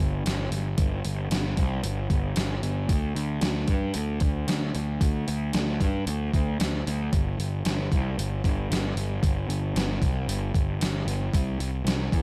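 Shoegaze-leaning dream-pop rock at 114 BPM in a straight 4/4, this wistful, blissful fragment pairs an up-front fuzz picked electric bass, overdriven and running low from G1 to G2, with a gated 80s digital drum machine entering at 0.3 seconds, its thumpy kick, hi-hat and gated-reverb snare sounding sampler-style and overdriven, caught in a small room, all within a fairly dry overall sound.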